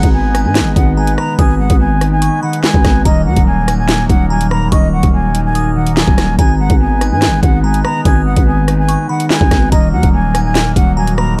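Cold and ominous, this short drill excerpt in G# minor moves at 144 BPM with a half-time feel, its chords shifting between G#m and D#m. An electronic drill kit sits up front with a knocking kick, sharp snare, metallic hi-hats, rim clicks and handclaps, alongside a growling, buzzy 808-style bass with a fast attack that decays. A breathy concert flute carries the melody with vibrato and a soft attack, while a glassy, crystalline synth bell traces a second line in the background, colored by chorus and tape echo. A mellow, clean electric guitar, fingered and dark, supplies accompaniment through analog chorus, and a reedy, nasal hand-pumped harmonium holds sustained chords with a vintage, band-limited tone. The production is dark and warm, with little reverb, keeping the drums and bass up front beneath the upper parts.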